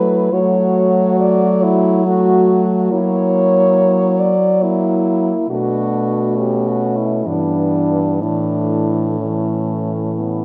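Classical and lyrical, this serene, tender 10.4-second passage from a longer piece for horn quartet moves in an unhurried 3/4 with a gentle rubato. A warm, up-front French horn carries the melody with light vibrato and a soft attack, while a second horn sits distant and roomy in the background, a mellow third horn gives smooth-topped accompaniment, and a clear, present fourth horn anchors the bass. The dark production is set in a moderate concert-hall reverb.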